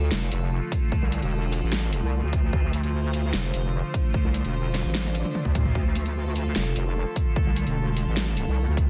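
A morphing wavetable pad and a heavy, saturated wobble bass open this short cut from a longer heavy wobble dubstep track, set in D minor at 149 BPM with a half-time feel in 4/4 and a chaotic, aggressive mood. The pad holds sustained chords with a slow attack and long release, its detuned triangle tone colored by phaser, built-in reverb and sidechain pumping, sitting back in the mix. The square-and-sine wobble bass is up front, its detuned unison voices thickened by chorus and overdrive over a single D minor chord. A layered electronic drum kit arrives almost at once, with a huge snare, metallic hats and toms, and a punchy, tape-warm kick joins at 0.7 seconds. A drum fill starts at 4.9 seconds, and a faint electronic swell enters in the background shortly after. The dense, heavily limited modern master carries light reverb and a digital ambience.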